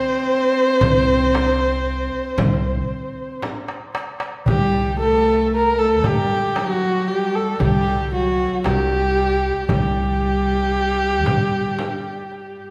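A dark, woody kamancheh, played by a single player, carries a longing, soulful melody up front with vibrato, portamento and tape echo in this 10/8 Turkish makam ensemble excerpt, over a soft, floating sul tasto cello section on the second line, pizzicato steel-string upright bass from 0.8 seconds, and a crisp metal-shell darbuka and small bright frame drum kept in the background, with a drum fill from 3.4 to 4.5 seconds leading into the next section, the band playing live in one room with a wet large-studio reverb and some lossy compression artefacts.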